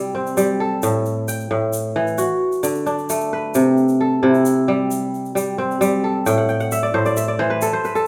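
West African traditional string music with a joyful, hypnotic pull, set in a straight 12/8 and cut from a longer piece. A fingerpicked kora carries the whole passage with ringing, crisp arpeggios placed up front, while a quiet, grainy egg shaker adds a bright sprinkle from 0.3 seconds. The sound sits in a lush recital-hall reverb, and the kora closes with a fill from 6.3 seconds.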